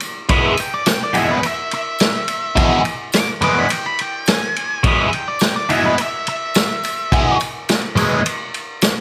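A biting, bright, double-tracked overdriven guitar drives this swaggering, raw garage rock excerpt, playing a picked, phaser-tinged riff up front in E mixolydian at 106 BPM in a straight 4/4, from 0.3 to 8.2 seconds. Above it, a dark, picked octave-fuzz lead guitar carries the melody. A vintage acoustic kit sits mid-forward with a punchy kick, medium-tuned snare and dusky ride cymbal, its top rolled off, while a jingly tambourine stays close and dry in the background, all set in a moderate stone room reverb.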